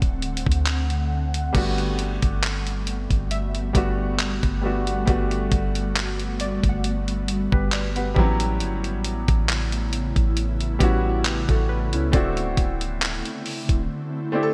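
A gently swung 68 BPM groove in 4/4 from a dusty, gritty sampler-style drum kit with thumpy kick, handclaps, hi-hat and crash anchors this tender, dreamy contemporary R&B excerpt in G major, where a soft, round 808-style bass and a clear, worn concert grand piano sit up front beneath an ethereal, airy pad with ensemble chorus, phaser and sidechain pumping, while a glassy wavetable pluck with digital delay drifts in the background from 1.5 to 12.5 seconds, the piano adds a fill at 7.3 seconds, and the bright 1980s-style digital production is framed by light reverb.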